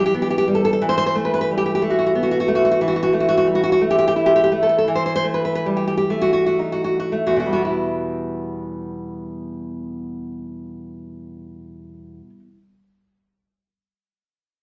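A bright, fingerpicked nylon-string guitar plays up front in this intimate, passionate romantic solo piece for classical guitar, a section taken from a longer work, in E minor and a rubato 6/8 at 35 to 61 BPM in dotted quarters. It spans E2 to C5 and moves through Em, Emadd11 and A5/E as it slows from 1.8 to 7.7 seconds, then returns to Em for a new section until the guitar stops at 12.6 seconds, all set in a wet, large studio reverb.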